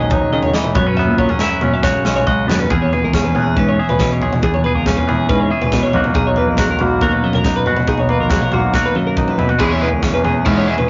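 A twangy, up-front electric guitar carries the accompaniment through this wistful, intricate excerpt of math rock and midwest emo in E lydian, moving at 139 BPM in a straight 4/4 while a bright, clean twelve-string electric guitar spins arpeggios above it and a growling, overdriven picked bass sits in the background. A modern studio drum kit with a punchy kick and medium-tuned snare drives the music, with drum fills at 1.8 and 8.7 seconds, and a biting, double-tracked overdriven guitar riff cuts in at 9.6 seconds as the harmony returns to E6. The sound is that of a rough rehearsal room, with tube saturation, a small room reverb and a dulled top end.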